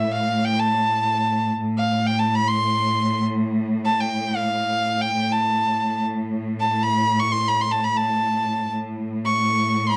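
Arabic maqam ensemble music in free time, this short passage cut from a longer piece feels warm and passionate. A single clear violin carries the melody from 0.0 to 10.0 seconds, bowed with vibrato, its tone biting and nasal yet smooth at the top, intense and placed up front with a slapback echo. Beneath it, a bright studio cello section sustains a bowed drone on A2, its ensemble sound likewise vibrato-rich, intense and close. The violin moves between E5 and C#6, set against that steady low foundation. The sound is dry and close in a 1970s-style studio manner, touched by light reverb.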